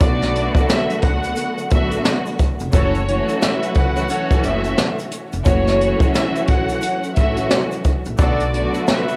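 A swung boom-bap groove from a roomy brush drum kit, with a boomy kick and high-tuned snare, anchors this gritty, moody hip-hop excerpt, joined by a woody, thumpy pizzicato upright bass and a grainy egg shaker tucked into the background. Over a lush, bowed string section with expressive portamento, a biting violin section carries the melody with a cassette-tape tint, while a punchy trumpet section enters with tape-echoed stabs at 2.7 seconds. The recording has a lo-fi, small-room home-cassette character, and the chords move from Bm7 to F#m7 and back to Bm7 near the end.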